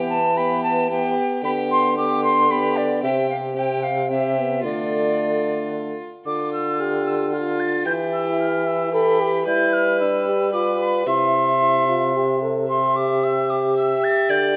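In a straight triple metre, this courtly, rustic renaissance-style consort dance, cut from a longer piece and tuned to A4 = 445 Hz, sets an airy, crisp-attacked silver flute melody up front over a gut-string violin second line with light vibrato, a dark, smooth-topped solo trombone accompaniment and a soft-attacked bassoon bass with vibrato, all four sounding throughout a moderate recital-hall reverb as the opening section gives way to a second at 6.3 seconds.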